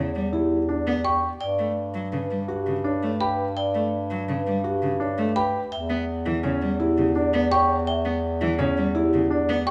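A wet recital-hall reverb surrounds this short extract of minimalist classical pattern music, giving it a hypnotic, bright glow in a steady 6/4. A vibraphone played with soft mallets carries the melody in a mellow, ringing tone with medium motor vibrato, while a single bowed cello offers rich, focused accompaniment with vibrato, sitting close. Beneath them, a bass clarinet holds the low line with a soft attack and a roomy, classical character. A present, intimate grand piano joins with arpeggios at 0.3 seconds, its action noise audible and its tone clear. At 1.0 seconds a xylophone struck with wooden mallets adds higher arpeggios, woody, dry and band-limited with a vintage colour, as the harmony moves from Em7 through Gmaj9 to Em.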